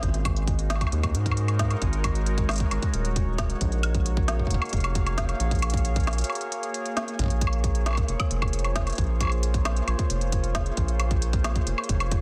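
A dense, heavily limited modern mix with light reverb frames this intricate, cerebral IDM fragment in Bb minor at 134 BPM, cut from a longer piece and moving through Ab7sus4, Gbmaj7 and Bbm7 chords. A warbling, nostalgic, lo-fi pad of detuned sawtooth tones holds mellow sustained chords, softened by chorus and its own reverb, while a round, deep analog bass sits up front with a dark, wave-folded tone. A tight electronic kick and a produced kit of smooth hi-hats, woody snare and woodblock, touched with small room ambience and digital delay on the kit, drive the groove throughout the fragment, which includes a brief break between 6.3 and 7.2 seconds.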